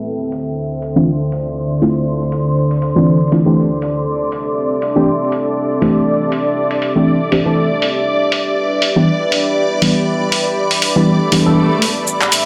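A dark, detuned analog pad and a warbling, lo-fi tape-like pad open this hypnotic, smooth deep house excerpt at 120 BPM, soon joined by a gritty, compressed sampler-style drum kit of cabasa, handclaps and hi-hat and an up-front, mellow chord stab with dub echo moving through Dm9, C69 and Em7, while shimmering vintage string-machine violins enter at 4.1 seconds, an electronic swell sits in the background from 11.3 seconds, and a round, horn-like synth lead with vibrato appears at 12.3 seconds, the whole set in a lush hall reverb under a filter sweep.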